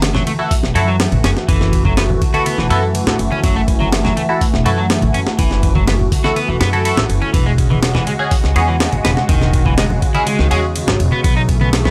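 Breakbeat at 123 BPM in F# minor, funky and energetic, driven by an up-front, gritty sampler-style drum kit of thumpy kick, snare, hi-hat and ride, a woody, growly pizzicato upright bass, a swirling phased analog pad with chorus and sidechain pumping, a twangy, slightly broken-up electric guitar riff with tape echo, nasal band-passed chord stabs colored by phaser, lush chorus and cassette tape, and low-tuned congas in the background, moving from F#m7 to E69 at 7.3 seconds and B9sus4 at 11.2 seconds in a dry hardware recording.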